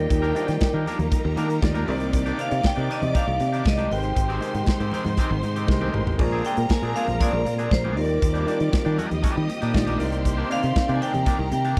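A straight disco pulse in 4/4 drives this short, danceable and celebratory excerpt, cut from a longer piece and recorded dry and close in a 1970s studio style. Up front, a polished modern drum kit with a tight kick and medium-tuned snare sets the groove alongside a growly, punchy fingered electric bass, with a brief drum fill between 5.7 and 6.2 seconds, while very quiet congas with a thin skin join at 0.4 seconds. The melody sits on a vibraphone struck with hard mallets, its dark, ringing metallic tone shaded by a slow motor vibrato. A twangy, bright electric guitar enters at 0.1 seconds as accompaniment, and a concert grand piano with audible action noise and long sustain fills in from the background. Two lush bowed string sections complete the arrangement: a distant symphonic ensemble carries a second line high above, and a smooth-topped studio section holds sustained chords beneath, over a progression moving through Ebmaj7, Cm9, Abmaj7 and Bb9.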